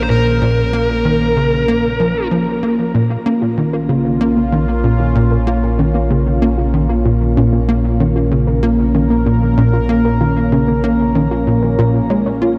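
Ambient, sequencer-driven space music in Bb minor at 95 BPM, mysterious and cosmic, where a punchy, up-front sawtooth sequencer bass riff with ensemble chorus and analog delay drives beneath a bright, detuned sweeping pad, a mellow ring-modulated analog drone on Bb1, and a dark, picked overdriven lead guitar melody that ends at 2.3 s, before a soft, warbling vintage pluck enters at 2.9 s with arpeggios in the background, all set in a dark production with a huge reverb of 7.3 s decay.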